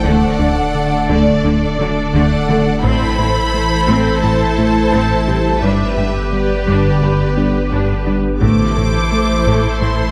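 Bowed violins, pads and synths sound together from the start of this cinematic excerpt of a hybrid orchestral and electronic film score. A warm violin section with light vibrato carries the melody over a lush second violin line, a rich viola accompaniment and cellos in the background, while a hollow, warbling pad, a tine-like synth pluck with chorus and digital delay, a rubbery square bass riff and a punchy sub bass fill out the texture at 86 BPM in A dorian. A felt-muted upright piano adds a very quiet, boxy texture with audible action noise, and a very quiet taiko ensemble strikes with heavy sticks at 2.8 and 8.4 seconds. The chords move from D through Am and G back to Am, and a wet scoring-stage reverb gives the whole a vast, futuristic mood.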